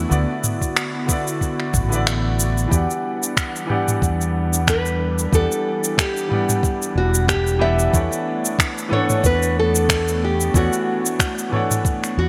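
A round, amped fretless electric bass sits up front in this smooth, relaxed sunset chillout excerpt at 92 BPM in E dorian, with a lightly swung 16th-note feel. A small, fingerpicked nylon-string guitar carries the melody through vintage 12-bit sampler grit and delay. Beneath it, a clear concert grand piano with deep bass plays through a low-pass filter and delay, and an airy, breathy pad of detuned sawtooth tones with chorus sits in the background, the chords moving from D69 to Em9 at 2.7 seconds and Bm11/E at 7.9 seconds. A tape-warm, up-front smooth R&B kit of finger snaps, shaker and toms is joined by a soft electronic kick from 0.6 seconds, within a moderate plate reverb and bright 1980s-style digital production.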